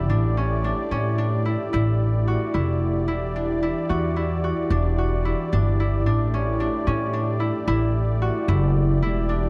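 A growly, woody pizzicato upright bass anchors this driving, intricate progressive instrumental excerpt at 222 BPM in 11/8, beneath ringing fingerpicked concert harp arpeggios and a dark, moody analog pad with detuned sawtooth tones, slow attack and chorus, moving from A7sus4 to Em7 at 3.1 seconds and back in a dry, close 1970s-style studio sound.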